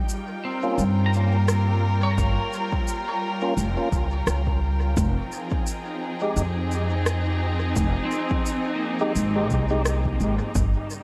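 A woody, thumpy pizzicato upright bass sits up front in this hazy, spacious ambient dub fragment at 86 BPM in F minor, beneath smooth bowed studio strings holding sustained chords over Gm7b5 and Fm7, a bright, twangy pedal steel guitar playing arpeggios through tape echo, fat tonewheel organ stabs with key click, light overdrive, fast rotary speaker and dub echo, an overdriven electronic shaker and rim click carrying dub echo and small room ambience, and a deep overdriven electronic kick that enters at 2.2 seconds, all under light reverb.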